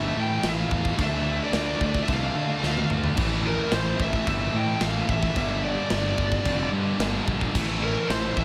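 Heavy metal in a straight 4/4, relentless and heavy, this short cut from a longer piece opens with a dark, distorted high-gain lead guitar carrying the melody in its upper register over two bright, scooped high-gain rhythm guitars picking riffs in the background. A growly fuzz bass, played with the fingers and overdriven, anchors the low end with a direct, amped edge. The big acoustic rock kit enters at 0.4 seconds and sits up front, with a punchy kick, a medium-tuned snare, crash and china cymbals, and toms ringing in a bright stone room. A drum fill from 2.6 to 3.2 seconds marks the turn of the progression, which moves from A5 through Dm and back to A5 before stepping to G5 and returning home. Light reverb gives the dense, grinding mix a touch of space.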